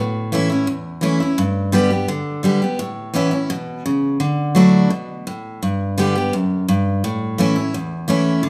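A bright, full-bodied picked steel-string acoustic guitar opens this short country excerpt and carries it from 0.0 to 8.5 seconds. The mood is down-home and nostalgic, with a brisk 170 BPM pulse in a straight 4/4 feel. The dreadnought guitar sits up front and ranges from E2 to G4, moving through A, G, Aadd9, Dadd9, G and back to A, with the chords changing every 1.4 seconds. The guitar is tuned to A4 = 442 Hz. The performance was captured live in one room, and a moderate large-studio reverb with a 1.2-second decay gives the instrument a roomy, natural halo.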